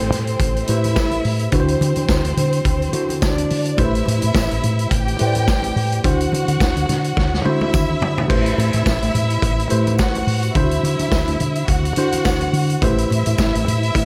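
A lush, distant bowed violin section, a worn and slightly out-of-tune tine electric piano, and a round, punchy fingered bass open this sultry, driving disco excerpt together, with a gritty, saturated vintage drum kit with dark cymbals up front joining almost at once on a lightly swung sixteenth-note feel. Very quiet ringing congas sit beneath, and a jingly tambourine enters in the background at 1.0 seconds as the harmony alternates between Am9 and D9. A drum fill arrives at 7.2 seconds, and the mix stays dry with little reverb.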